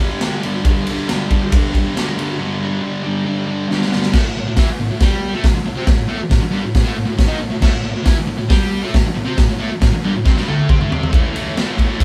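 A thick, bright fuzz guitar riff opens this raw, rowdy garage rock excerpt in straight 4/4, joined almost at once by a punchy, gritty drum kit with a medium-tuned snare, crashes, hi-hat, ride and toms pumping in a stone room, the band sounding live together under light reverb, with a break at 2.4 seconds, drum fills, and a shift from G5 to A5 chords at 4.1 seconds.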